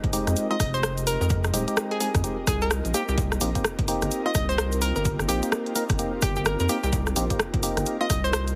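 Heavily compressed with a radio-like squeeze and light reverb, this short fragment of a longer UK garage track has a soulful, moody two-step feel at 128 BPM in 4/4, with a 61% swing on the sixteenths and tuning set to A4 = 442 Hz. A punchy, tape-warmed electronic kick, re-recorded in a small room, sits beneath a layered garage kit of hi-hat and rim click, while a grainy, close and dry egg shaker ticks along in the background. The rubbery, saturated square bass is dark and up front from 0.3 seconds, as the harmony moves from Fm9 to Cm7 at 2.9 seconds. A percussive organ-like stab and a bright, detuned hollow pluck carrying the melody both decay quickly and trail chorus and dub echo. Underneath, a very quiet, smooth sawtooth pad holds sustained chords, and a mellow, ethereal pad with ensemble chorus, phaser and sidechain pumping drifts through the background until 8.6 seconds.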